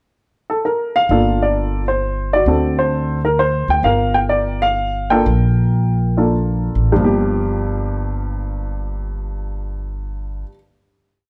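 The recording sits in a light reverb with both instruments close and up front, giving this short, complete jazz piano trio piece a cool, late-night intimacy. A warm upright piano, bathed in plate reverb and with a short sustain, opens with a pickup bar at 0.5 seconds, shaping a motif-based melody of call phrases over syncopated comping in rootless voicings. The upright bass joins at 1.1 seconds with a woody, pizzicato tone from steel strings, playing a two-feel line low in the register. In G minor and tuned to A4 = 444 Hz, the music swings its eighths in 3/4 at a tempo between 92 and 132 BPM, moving through Gm7 and D7 before returning to Gm7. From 3.8 seconds the pace slows, leading into a held final chord that closes the piece.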